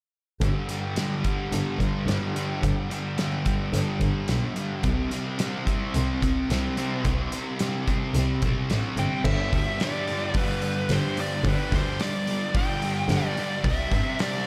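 A straight 4/4 pulse at 109 BPM from a loose, acoustic indie drum kit with a punchy kick and rolled-off top drives this hazy, wistful shoegaze and dream pop excerpt in G major, where an up-front, double-tracked fuzz guitar riff with lush chorus sits over a distant bowed double bass with expressive vibrato and portamento, and a dark fuzz lead guitar with delay takes the melody from 9.0 s, the whole mix soaked in dreamy hall reverb.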